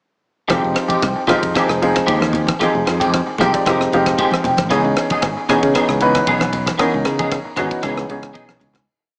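A dark, mellow baby grand piano sits up front in this slick, nocturnal piece of electric jazz fusion at 114 BPM, playing syncopated rootless chord stabs with plate reverb over Fm9 and then Dbm9, and stepping out for a fill at 3.1 seconds. A bright, twangy clean electric guitar adds compressed funk strumming in upper chord shapes, colored by ensemble chorus, tape echo and plate reverb, while a punchy fretless electric bass drives a syncopated riff. A tight acoustic funk drum kit plays a samba groove on kick, ride cymbal and rim click, and low-tuned congas with a thick skin enter at 0.9 seconds in the background, all heard through a small speaker sound before a fade-out begins at 6.8 seconds and a short drum fill closes the piece.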